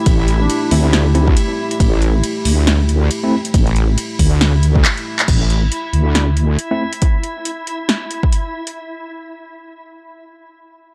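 A swung, half-time 138 BPM groove drives this dark, heavy deep dubstep piece: an up-front, overdriven deep kick and a punchy deep house kit with metallic hats and a fill at 4.8 s sit under a saturated, detuned sawtooth wobble bass, a moody analog pad with sampler grit that holds chords until 5.3 s, a reversed, dreamy swelling texture, worn, slightly out-of-tune tine electric piano stabs with tremolo and dub echo, and a brief, distant duduk note at 0.4 s, all captured on a dry, gritty hardware recording with transformer saturation and cassette tape.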